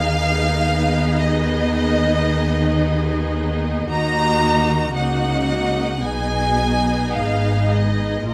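Moving in a slow, rubato 4/4 at roughly 52-58 BPM, this brief passage, cut from a longer classical piece, is a solemn, melancholic romantic movement for string orchestra tuned to A4 = 438 Hz. Up front, a clear, focused violin section carries the melody high in its register, while a second, richer violin section sits further back on a supporting line beneath it. A distant, lush viola section fills in the accompaniment, and a close, full-bodied cello section joins a warm, even double bass section, the latter with a smooth top, to anchor the bass. Every section plays bowed with vibrato from the first moment to 8.3 seconds, and the harmony moves from Abm/Eb to Ebm at 3.9 seconds and on to Abm/Cb at 6.0 seconds. A moderate reverb suggests a large studio space, giving the ensemble a sense of depth.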